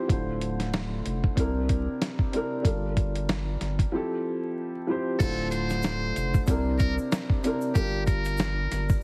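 Moody and tough, this boom-bap hip-hop fragment from a longer piece rides a swung 94 BPM groove in G dorian, cycling through Dm9, C7, Gm7 and Fmaj9. A dark, woody upright piano sits up front with audible action noise and long sustain, its boxy tone filtered and softened by cassette tape. Beneath it, a deep, saturated sine sub bass holds sustained notes, while the dusty, sampler-style drum kit sits up front, gritty and compressed, with a thumpy kick, a medium-tuned snare, hi-hat and crash. After a break at 3.9 seconds, a forceful muted trumpet enters at 5.2 seconds with a brilliant, buzzy jazz solo full of vibrato and scooped notes, trailed by delay. A grainy egg shaker joins quietly in the background at the same moment, and the whole mix carries studio reverb, vinyl crackle and a heavily compressed, radio-like sheen.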